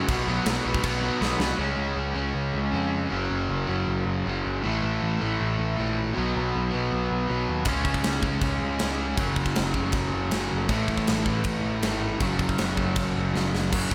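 A straight 4/4 pulse at 158 BPM drives this rowdy, energetic punk rock excerpt, where a bright, compressed distorted electric guitar up front and a warm, hollow-bodied overdriven semi-hollow guitar in the background both pick a riff through B5, C#5, F#5 and A5 over a fuzzy, overdriven picked electric bass, while a big acoustic rock drum kit with a punchy kick, a medium-tuned snare and crash cymbal, set in a stone room, plays from 0.1 to 1.5 s and then returns at 7.7 s, all under light reverb.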